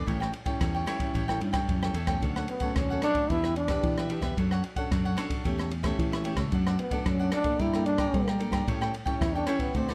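Festive and lively, this samba and choro excerpt moves at 112 BPM in D major, with a warm, up-front trombone carrying the melody as a jazz-style solo full of scooped notes across the whole 9.9 seconds. Crisp picked cavaquinho and a small, woody fingerpicked nylon-string guitar with old strings fill out the accompaniment, while a growly, punchy fingered electric bass anchors the low end. An open jazz drum kit enters at 0.1 s with a boomy kick, dark cymbals on the ride and rim clicks, all set in a moderate studio reverb as the harmony moves from A7 through Dmaj7, Em7 and Gmadd9 back to A7.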